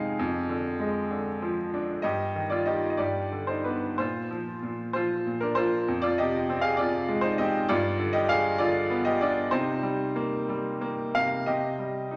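Classical solo piano in C minor, melancholic and wistful, moving in 6/8 at 59-68 BPM with a free, rubato feel, tuned slightly high at A4 = 441 Hz. A bright, brilliant grand piano sits up front with a natural tone, ranging from F2 to F5 as its harmony passes from Ddim/F through Ebmaj9/G, Fm and G7 to settle on Cm at 11.5 seconds. The sound is bathed in a wet recital hall reverb and a layer of vinyl crackle, in a short cut from a longer piece.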